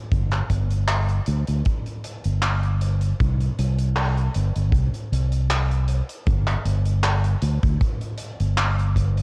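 A lightly swung 4/4 groove drives this hazy, melancholic vaporwave fragment, cut from a longer piece, where a thumping, up-front acoustic kick and a big-room rock kit with handclaps and hi-hat sit alongside a warm, punchy fingered electric bass played direct and amped in its low register, all captured with little reverb and a cassette-tape grain as the music moves into a new section at 3.2 seconds.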